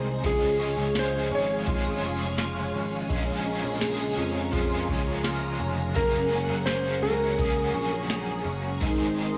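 Dream pop in a hazy, haunting mood, where a dark, clean lap steel guitar sings a slide melody through analog delay over lush sawtooth string-machine chords with phaser and chorus, twangy arpeggios from a slightly broken-up electric guitar, a bright overdriven guitar with tremolo, a growly, round picked bass and a booming analog drum machine with a deep kick, tonal snare, metallic hats and tambourine, all set in a dry, gritty small room with light digital ambience.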